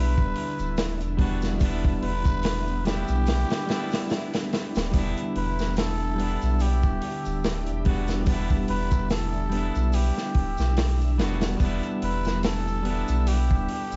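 A dark, close, dry mix, dusted with vinyl crackle and a dulled top end, frames this melancholic trip hop excerpt in E minor at 72 BPM, swung on the sixteenths and resting on a single Em7 chord. A crunchy, saturated breakbeat kit sits up front from 0.2 s, with a tight kick, medium-tuned snare and hi-hat, while faint, bright maracas sound distant, as if from a large room. Underneath, a round, sine-like sub bass with tube saturation holds the low end, and a clean, picked electric guitar with harmonic tremolo carries the accompaniment. A vintage sawtooth string machine voicing cellos sustains chords in the background, full and dark through phaser and ensemble chorus. A cup-muted trumpet takes the melody in a soft, veiled jazz style, raspy and growling with light vibrato and scooped notes, and it shares the string machine's 12-bit sampler grit while trailing dub echo. From 0.3 s a barely audible reversed, dreamy, detuned granular texture adds a swelling haze to the warm, shadowy atmosphere.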